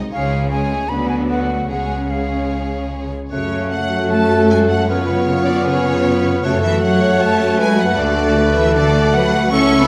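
Set in a fast 4/4 with a rubato feel, this stormy, urgent classical fragment pushes forward in a minor key, cut from a longer piece. A warm violin section carries the melody high above the orchestra with focused, lush vibrato, while a second, closer violin section and a pure, straight-toned concert flute trace second lines alongside it. Beneath them, a viola section sits smooth and even in the background as accompaniment, and a dark, distant French horn section holds sustained chords. The bass is anchored by a focused cello section and a more remote double bass section, both bowed with vibrato. At 3.3 seconds a mellow solo bassoon joins the accompaniment as the harmony settles onto F#m and C#7/F#, and the whole ensemble rings out in a reverberant recital hall.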